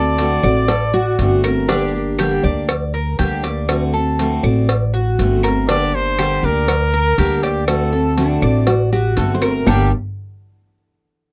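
A dry, close studio sound with little room around it frames this short, nostalgic slice of Cuban son and guajira, danceable at 120 BPM in a straight 4/4 and settling into G harmonic minor from 5.7 s as the chords sway between D7 and Gm. Up front, a pizzicato upright bass gives a woody low foundation while a bright, freshly strung steel-string acoustic guitar picks the accompaniment throughout. A Cuban tres adds metallic arpeggios from its doubled strings, and round, low-tuned cowbell and bongos played with soft hands are soon joined by the claves, which sit quietly in the background. A breathy, whispered trumpet carries the melody in an intimate, close-miked pop style with vibrato and a soft attack, heard briefly at the start and then returning at 5.7 s. A full-bodied, fingerpicked nylon-string guitar with audible finger squeak supplies a second line in two passages, coming back at 8.2 s.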